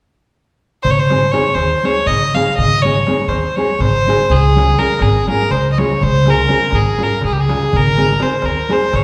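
A resonant concert-hall reverb surrounds this wild, exuberant excerpt of Balkan wedding-band folk in a straight 7/8 at 245 BPM in Ab major, where a nasal, reedy gut-string fiddle bows the melody up front from 0.8 seconds, a woody, thumpy pizzicato upright bass anchors the low end, a crisp, small metal-shell darbuka sits distant in the background, and a full-bodied fingerpicked nylon-string guitar with audible finger squeak enters at 1.1 seconds to accompany a simple move from Ab to Db and back.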